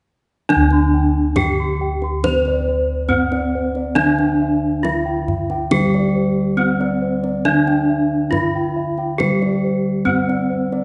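A bronze metallophone carries the melody up front, struck with a horn mallet for a bright, ringing tone whose paired tuning produces shimmering beats in an airy space. This is a serene fragment of Javanese gamelan at 69 BPM in a straight 4/4, cut from a longer piece, with every part sounding together from 0.5 to 10.8 seconds. Beneath the lead, a second metallophone plays the accompaniment with padded disc mallets, giving a mellow, soft foil. Two sets of bossed gongs add round, beating bronze: one spins arpeggios in the upper register with a close-miked, dry, full sound, while the other holds the bass in a boxy small-room tone that feels warm. A kendang sits in the background, deep and acoustic. The whole ensemble is wrapped in a generous concert-hall reverb, with the top end rolled off for a softened, glowing haze.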